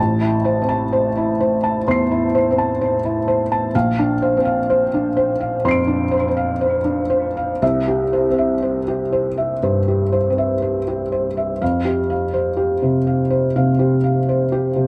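A soft, close sound opens this short passage from a longer neoclassical minimalist piano piece, with light reverb around a felt-muted upright piano that sits up front. The piano plays alone for the full 14.9 seconds, its mellow, muted tone carrying audible action noise and a touch of tape echo. The tempo drifts between 58 and 65 BPM in a rubato 4/4, and the mood is intimate and peaceful. In F major, tuned to A4 = 441 Hz, the harmony moves from Am through Bbadd9 to C before settling on Fsus2 at 11.6 seconds, where a new section begins. The playing spans a broad register from A1 to D7.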